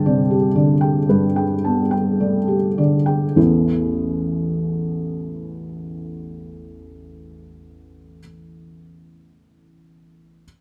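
The rhythm is loose and rubato in 4/4, drifting between 49 and 59 BPM and slowing over the opening 3.4 seconds. This is a short passage of intimate, melancholic neoclassical minimalist piano, cut from a longer piece, played by a solo felt-muted upright piano from 0.0 to 10.5 seconds across a range from A1 to A5. The instrument sounds soft, dark and boxy, its thick felt giving each note a muted, mellow tone that sits up front. Harmony rests on G before moving to Asus2 at 3.4 seconds, where a second section begins and runs to 8.2 seconds. A moderate stone room reverb surrounds the piano, captured as a live performance in a single room.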